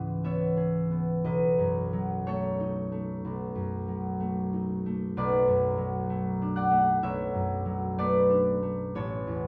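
A concert harp, thumb-plucked and ringing, sits up front in this mysterious, gentle solo classical passage, its close and detailed sound spanning A1 to G#5 with a warm, acoustic body. Played with a rubato feel in 4/4 and tuned to A4 = 444 Hz, the harmony moves from C#m7 through B9 and Bm7 before arriving on Aadd9 at 8.9 seconds. A wet recital hall reverb surrounds the instrument across this short fragment cut from a longer piece.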